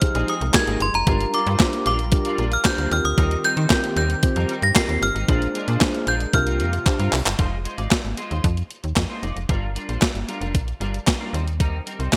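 A clean 12-bit digital drum machine sits up front in this danceable, late-night slice of early-eighties boogie funk, its thumpy kick, medium-tuned snare, hi-hat and handclaps bathed in gated reverb and carrying the sound of a large room. At 114 BPM in straight 4/4 and F dorian, a snappy, slap-like FM bass with a metallic attack drives the groove over chords moving from Fm7 through Gm7, Eb6, Bb7 and C7sus4. A ringing, inharmonic FM bell carries the high melody with chorus and a long release, supported by a mellow tine electric piano and a smooth, detuned sawtooth pad with chorus that stays in the background. A clean, picked electric guitar riff with analog chorus runs throughout. During a drum fill, the bell, electric piano and pad drop out one after another, all gone by about 7.4 seconds, leaving guitar, bass and drums to cycle back through Fm7, Gm7 and Eb6 until the cut at 12.2 seconds. 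The production is bright and digital in a 1980s style, with light reverb.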